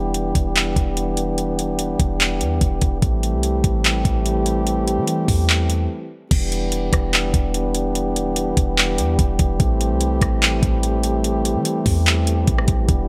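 A smooth, electronic R&B drum kit sits up front with a knocking kick, metallic hi-hats, handclaps, rim clicks and crash cymbal, driving this hazy, spacious cloud-rap excerpt at 146 BPM in a half-time feel in E minor. Beneath it, a clean, deep 808-style bass with a fast attack and decaying sine tone anchors the Em7 to Am7 changes. A mellow, close-miked French horn section holds tight sustained chords with light vibrato, pumping under sidechain compression, while a brief break at 5.9 seconds leads into the second section, all framed by light reverb and bright 1980s-style digital production.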